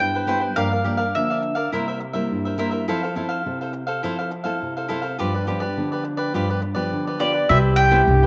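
A lively, festive samba fragment opens with a picked, double-strung mandolin melody, backed by crisp picked cavaquinho and a dark, full-bodied fingerpicked nylon-string guitar, all up front in a wet spring reverb. The mandolin drops out at 2.6 seconds while the accompaniment moves through the chords, and it returns at 7.2 seconds. At 7.5 seconds a clear, close-miked classical clarinet adds a second line, and a woody, thumpy pizzicato upright bass enters on a low C.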